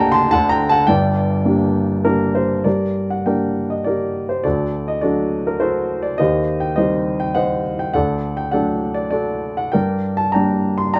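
A grand piano opens this brief classical excerpt alone, its warm tone sitting up front as it unfolds a lyrical line in G harmonic minor. The mood is cool and brooding, moving in 3/4 at around 102 BPM with a flexible, rubato feel that lets phrases breathe. The harmony circles between D and G minor, touching on C minor with E-flat in the bass near 6.2 seconds before settling back on G minor at 9.7 seconds. Across its span the piano reaches from deep low notes up into the bright upper register, and a shift into a new section arrives at 2.7 seconds. A moderate studio reverb gives the instrument a sense of room, while the overall production leans dark. Tuned slightly below standard pitch, the recording is cut from a longer piece and ends at 11.0 seconds.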